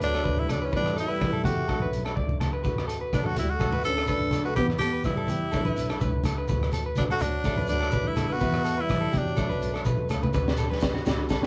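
A joyful, danceable highlife guitar band groove opens with a raspy, up-front tenor saxophone carrying the scooped, vibrato-laden melody over a dark, forceful trombone second line set further back. Beneath them, a boxy, woody old ladder-braced acoustic guitar is fingerpicked in the background while an electric guitar at the edge of break-up picks arpeggios with a vibrato effect. A bowed double bass, distant and expressive with portamento, anchors the low end alongside a gritty, saturated breakbeat drum kit with a punchy kick, a high-tuned snare, hi-hat, rim click and a rolled-off top. Thick-skinned congas join moments in, struck with hard hands, and a grainy, mellow shekere enters at 2.6 seconds, both sitting low in the mix. The horns drop out at 9.9 seconds, and a drum fill at 10.0 seconds leads into a brief new section as the band, playing live in one moderately ambient studio room, rolls on in this cut from a longer piece.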